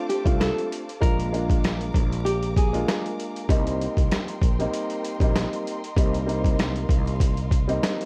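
Tough and reflective, this short boom-bap hip-hop excerpt in C minor sits at 97 BPM with a light swing and a dry feel under vinyl crackle, built on an up-front, compressed, pitched-down sampler-style drum kit with a thumpy kick, medium-tuned snare, rim click and hi-hat, plus a growly, punchy fretless electric bass entering at 0.3 seconds. A dark, woody upright piano with audible action noise comps through Dm7, Bb7 and Cm7, while a lush, distant bowed string section holds sustained chords with vibrato and portamento high above. A fingerpicked classical nylon-string guitar carries a brief melody through an analog delay, stopping at 3.5 seconds.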